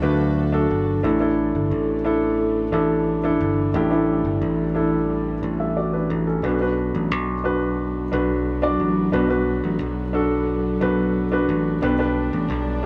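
A straight 4/4 pulse at 89 BPM carries this hopeful piece of piano-driven pop, cut from a longer song. A concert grand plays the accompaniment, its intimate, natural tone sitting up front with deep bass and audible action noise as it spans from A2 to E5. Beneath it, a picked electric bass plays in a low register, bright, direct and growly, while a dark studio string section holds sustained chords with a soft attack, light vibrato and a sul tasto hush, sounding close and ensemble-like. The harmony moves from D to Asus4 at 1.0 seconds, settles on Bm at 6.4 seconds and turns to G at 11.8 seconds. All three parts play throughout, as a band captured live in one room with a moderate studio reverb that gives the whole a warm, unified feel.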